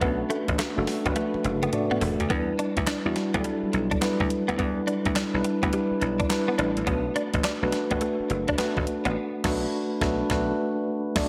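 A mellow tine electric piano sits up front in this slick, punchy new jack swing excerpt in E minor, moving through Bm7 and Em7 at 105 BPM with a 16th-note swing, while a dry, bright thumbed slap bass punches underneath. A crisp 8-bit drum machine with a thumpy kick, fat snare, handclaps, hi-hat, toms and crash plays a fill at 1.2 seconds, and a clean, scooped, compressed electric guitar with ensemble chorus picks a riff until 9.1 seconds. The band hits an accent from 9.2 seconds to the cut, all of it soaked in a lush hall reverb that gives the mix a dreamy glow.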